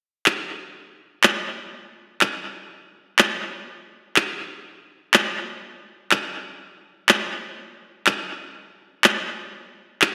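A big arena sound washes over this short pop excerpt, its lush hall reverb giving every hit a long, wet tail. Electronic handclaps carry the whole clip, entering at 0.3 seconds and running to the end at 10.1 seconds. Produced and up front, the claps carry a slapback echo that doubles each strike with a quick repeat. The pulse sits at 123 BPM in a straight 4/4, giving the passage an energetic, driving feel. Cut from a longer piece, the clip stays within a single section from start to finish.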